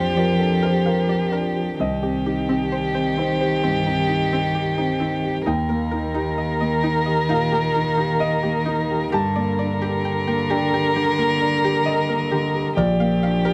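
Intimate and hopeful, this neoclassical fragment for piano and strings drifts at a rubato 66 BPM through Bb6, Cm, Eb and Gm. A single bowed violin sings the melody up front with expressive vibrato and portamento, while one cello carries a smooth, even second line beneath, and a natural-sounding grand piano, warm and forward, supplies the accompaniment. In the background a bright, twangy string-like resonator pluck adds decaying arpeggios treated with chorus and slapback echo, all captured with close, detailed microphones and light reverb.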